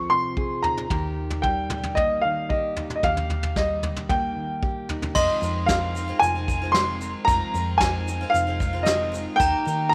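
Light reverb gives this wistful, yearning indie folk passage, cut from a longer piece, a gentle sense of space as its arrangement builds in a straight four. An up-front upright piano carries the melody in a woody, short-sustained voice over a full-bodied fingerpicked jumbo acoustic guitar. A hollow-body short-scale electric bass adds a round, amped low end. Soft brushes on a natural small-room drum kit come in at 0.4 seconds, with dark cymbals, a medium-tuned snare and a punchy kick sitting close. Around 5.2 seconds the fingerpicked guitar gives way to a shimmering, octave-doubled twelve-string, while a glockenspiel played with brass mallets rings out a sparkling, airy second line and a grainy, vintage-toned egg shaker sits in the background. Underneath, the harmony moves between Fm7 and Eb.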